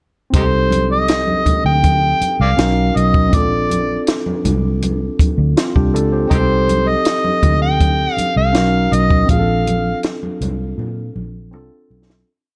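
A smooth mid-tempo soul groove at 80 BPM in 4/4 opens this short, lush 1970s-style soul piece. A compact cocktail kit sits up front with a high-tuned snare and punchy kick, and a fingered electric bass lays down a round, foam-muted soul line with ghost notes and chromatic approach notes. A barky tine electric piano, lightly overdriven through a combo amp, holds rootless chords with grace notes and short fills over a Cm69, Bmaj9 and Bbmaj9 progression. Congas ring softly in the background with a syncopated pattern, set back as if in a large room. An amplified, gritty harmonica carries the hook-based melody from 0.4 seconds, with vibrato, tongue slaps and scooped notes in a jazz style, colored by slapback echo. The mood is silky and cinematic, the sound dry and close, and the piece fades out from 9.3 seconds as a drum fill closes it at 12.3 seconds.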